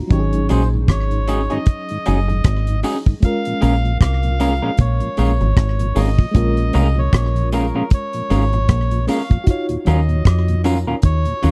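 A dry, close 1970s-style studio sound with small room ambience frames this smooth, bittersweet lovers rock reggae excerpt in Bb minor, moving at 77 BPM in 4/4 with a swung sixteenth feel. Up front sit a damped 70s drum kit with a tight kick, hi-hat and rim click, and a deep dub fingered electric bass that is dark, round and foam-muted. A reedy, breathy melodica carries the melody from 0.1 seconds through tape echo, its nasal, band-limited tone set against a glassy, bell-like FM electric piano treated with chorus and tremolo and a mellow tonewheel organ with key click turning through a slow rotary speaker in the background. From 0.5 seconds an electric guitar through a small old amp adds slightly broken-up, lo-fi stabs with a warbly pitch drift, while tambourine and woodblock, joined by egg shaker and group handclap, sit quietly behind with slapback echo. The harmony moves from Ab7sus4 to Bbm7 and settles on Ebm9 near the close of this cut from a longer piece.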